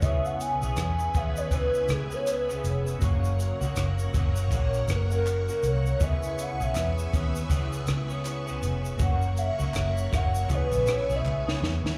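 A swung 80 BPM groove from a compact cocktail drum kit with a punchy kick and high-tuned snare, together with a dark, foam-muted bass up front, sets this hazy, lonely indie and bedroom pop excerpt in C# dorian, where a hollow, woody clarinet-like synth lead soloes with lush chorus and slapback echo over a slightly broken-up guitar through a small old amp, gentle electric-piano-like keys with cassette tape coloring, shimmering string-machine violins and very quiet group handclaps entering at 0.8 seconds, all heard as a live gig through the venue's club reverb, with chords moving between C#m7 and F# and a drum fill at 11.3 seconds.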